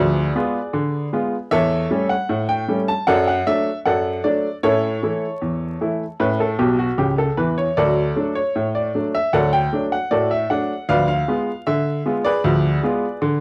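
A bright, woody upright piano plays alone up front, with short sustain, in a playful, cheerful ragtime piece in D major at 77 BPM in a straight 2/4, cut from a longer performance. Its harmony moves from Ddim7 through A7/E, D/F# and A to D before returning to Ddim7, and the piano adds a fill from 6.6 to 7.8 seconds. The sound has the homespun character of a cassette recording, with vinyl crackle and a wet studio ambience around the piano.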